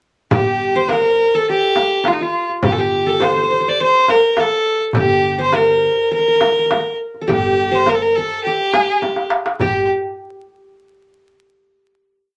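A straight 4/4 pulse at 103 BPM comes from a crisp, metal-shell darbuka played with soft hands, its vintage, band-limited tone sitting beside a close, dry frame drum, both working low and high stroke patterns, while a woody, thumpy pizzicato upright bass on gut strings holds G1 on the low drum strokes. Up front, a clear bowed fiddle with light vibrato carries an earthy, ornamented modal melody in G makam nihavent, and a bright-edged, plectrum-plucked qanun with triple strings plays the same line with its own ornaments, giving the piece a longing, hypnotic mood. A drum fill at 9.0 seconds leads into a final note that lingers in the wet studio ambience until 11.9 seconds, with vinyl crackle and lossy compression artefacts colouring the sound.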